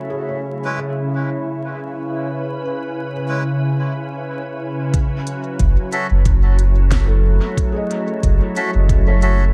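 A lightly swung sixteenth-note groove in 4/4 arrives at 4.9 s, when a muffled, thumpy sampler kick and a low-passed electronic kit with a woody snare and crisp hats take hold, followed by a deep, round sub bass up front at 5.6 s. Before that, this meditative, hazy ambient dub fragment opens on a pure, organ-like pad that holds sustained C#m7 chords under a filter sweep, turning to F#m7 as the beat begins. A felt-muted upright piano with audible action noise plays soft arpeggios through analog delay in the background, while a reedy, breathy melodica drops dub-echoed stabs into an echo-heavy mix dusted with vinyl crackle.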